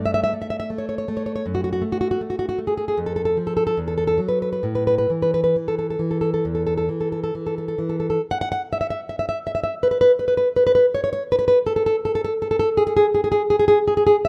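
Rubato phrasing stretches a 4/4 pulse that drifts between 64 and 83 BPM in this tender, romantic piece for solo classical guitar. The nylon-string guitar carries everything alone, fingerpicked and up front, with a warm acoustic tone and the occasional finger squeak, ranging from a low E2 up to F#5. The opening phrase centres on A major, moving through A7/G and F#madd9, then a brief chordless stretch, before Esus2 and A5. At 8.2 s the music shifts toward E major for a new section that carries on to 14.3 s. Light, small-room reverb surrounds the instrument, and the rough home-demo mix gives it an intimate, unpolished feel, as though it were lifted from a longer work.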